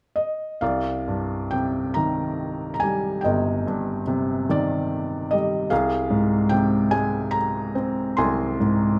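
A felt-muted upright piano enters at 0.2 seconds and plays alone, a lyrical classical solo in 6/8 with free, rubato timing. The mood is dark and wistful, settling first on a C minor add nine chord at 0.6 seconds before moving to F minor over C at 5.7 seconds. The piano spans from deep G1 up to C6, its thin felt giving a soft, mellow tone, and audible action noise lends the close, up-front sound an intimate quality. A moderate recital hall reverb surrounds the instrument with a gentle sense of space. This brief excerpt is cut from a longer piece and runs to 9.0 seconds.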